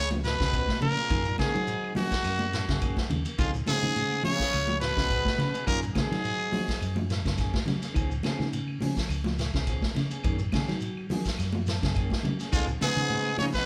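A driving, hypnotic afrobeat groove at 105 BPM in 4/4 with a light sixteenth-note swing, anchored by a roomy vintage drum kit with a punchy kick and dark cymbals, a round fingered electric bass, and background layers of high-tuned congas, grainy shekere and woody claves over a Db7 to Gb69 vamp in Db mixolydian. A raspy, growling trumpet leads up front with a punchy trombone section beneath it, while a dark, picked semi-hollow guitar plays arpeggios and a twangy clean electric guitar adds stabs. The horns drop out at 7.0 seconds and return at 12.5 seconds, joined at 12.6 seconds by an edgy alto saxophone with scooped notes, all in a live room with a moderate studio reverb.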